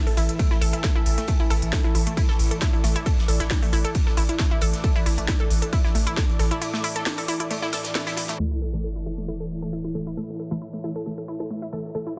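A resonant, ring-modulated drone with moving overtones and a blurred, granular cloud pad open this dark, hypnotic excerpt of driving peak-time techno at 135 BPM. They are quickly joined by a bright, detuned unison pluck riff with overdrive and dub echo, a thick saturated sub bass, an up-front heavy electronic kick, a techno drum kit with cracking snare and smooth hats, and a gritty, low-tuned acoustic kit sitting in the background in a stone room, with sidechain pumping running through most of the parts. After a break at 6.6 seconds, an impact at 8.4 seconds brings an up-front sub drop and a muted, phased dub chord stab with tape colour and echo, while a filter sweep moves over the synths. The dense, heavily limited master carries light digital ambience.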